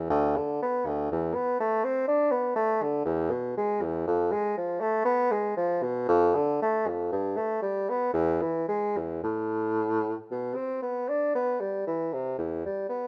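A mellow solo bassoon carries this short extract from a longer baroque-style fantasia, playing alone from 0.0 to 13.1 seconds across a range from D2 to D4. The mood is introspective and solemn, set in A minor in 3/4 at 59 BPM with a free, rubato feel. The bassoon's tone has vibrato and a soft attack, sitting up front yet carrying a distant, roomy quality in its classical style. Close, detailed microphones capture the instrument inside a stone room whose moderate reverb lingers for about 1.3 seconds.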